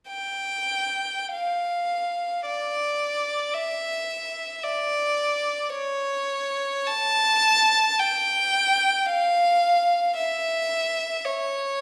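A recital hall's generous reverb, with a decay of about 1.3 seconds, surrounds a single violin that still sits close and up front. This is a short cut from a longer classical work for unaccompanied violin in D minor, with a lonely, mournful mood. The tempo drifts freely between roughly 48 and 57 BPM in 3/4, with an expressive rubato feel. The bowed violin plays from 0.1 to 11.8 seconds, staying in a high register between C#5 and A5. Its tone is clear, smooth and even, coloured by vibrato.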